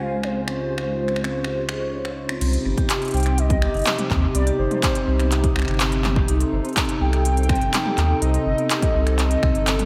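Melancholic and glitchy, this IDM passage at 124 BPM in C melodic minor opens on a Dbmaj7 chord, where a warbling, nostalgic lead with tremolo, chorus and analog delay floats over a hollow, flute-like pad with 12-bit sampler grit and metallic, ringing vibraphone arpeggios under a filter sweep, while a faint, bubbling stepped-filter texture sounds only until 2.4 seconds. At that point the music settles onto C minor as a deep, round sine sub bass enters up front, joined at 2.8 seconds by a heavy, tape-warm electronic kick beneath an industrial kit of crisp hats, snaps, claps, toms and crash that has been running since 0.2 seconds. A moderate plate reverb soaks the mix in a dreamy haze, and the fragment is cut from a longer piece.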